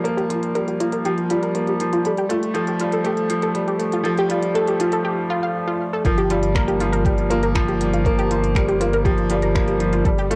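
Piano and strings electronica in G minor at 120 BPM, hypnotic and intimate, with a bright, woody upright piano riff up front and a lush, detuned unison pluck whose arpeggios carry a filter sweep through the build-up, both colored by cassette tape and tape echo and, in the pluck's case, sidechain pumping, over soft finger snaps and smooth hi-hats from an organic electronic kit. After a brief break from 5.0 seconds, a round, dark analog bass with pumping and a deep electronic kick drop in at 6.0 seconds, all within a moderate spring reverb that gives this cut from a longer piece a homemade cassette character.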